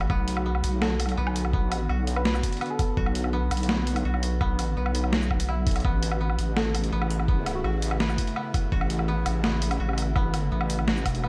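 A half-time drum and bass groove at 167 BPM in B minor carries this dark, heavy excerpt, its gritty, pitched-down kit of thumpy electronic kick, high-tuned snare, hi-hat, shaker and woodblock sitting up front with the sound of a large room, over a deep wobbling square-and-sine bass softened by chorus. A tense, string-like bowed drone holds sustained chords with vibrato, built-in reverb and sidechain pumping, while a dry, woody koto picks arpeggios through lo-fi 12-bit grit and digital delay. A round, keys-like FM lead drifts in the background at 0.8 seconds and again at 6.6 seconds, washed in phaser, chorus and delay, as the harmony moves from Bm to A at 5.8 seconds.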